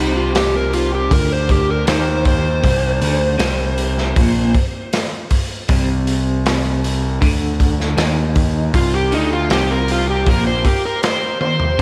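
An overdriven slide guitar carries the melody up front, its dark, fingered tone trailing tape echo as it solos across the whole 11.8-second clip, cut from a longer piece. This is trippy, mysterious psychedelic rock at 79 BPM in a straight 4/4, resting on a single C minor chord in the key of C minor. A fuzz picked electric bass sits up front with a round, punchy, overdriven sound, while an electric guitar through a small old amp plays a twangy, slightly broken-up riff with tremolo in the background. A crunchy breakbeat drum kit of hi-hat, kick, snare and toms enters at 0.3 seconds, gritty and saturated with a tight kick, a medium-tuned snare and a rolled-off top, and closes with a fill at 11.4 seconds. The mix is dreamy and soaked in a huge ambient reverb with a long 8.0-second tail.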